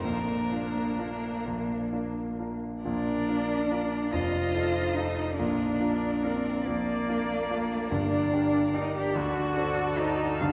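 A rubato 6/8 lilt at 41-49 BPM carries this serene, lyrical slow romantic movement for piano quartet in Bb major, cut from a longer piece, where a warm violin sings the melody with vibrato and portamento, a dark, woody cello shapes a second line up front, a smooth, even viola fills in the accompaniment, and a clear, polished grand piano moves through Bb, F7, Gm and D7 inside a cathedral's lingering reverb.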